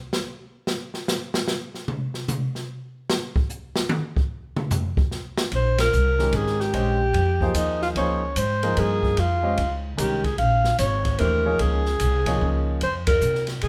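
An intense, spiritual modal jazz passage in Bb dorian opens with an airy, polished drum kit soloing alone, its dark cymbals and boomy kick swinging in 3/4 at 148 BPM, until a woody, thumpy pizzicato upright bass enters at 5.5 seconds over a Bbm9 chord, followed a moment later by a breathy, mellow alto saxophone with vibrato and scooped notes, and at 6.2 seconds by a clear, deep-bassed grand piano, with band accents at 5.7 and 13.0 seconds and a move to Db at 10.4 seconds, all inside a moderate large studio reverb.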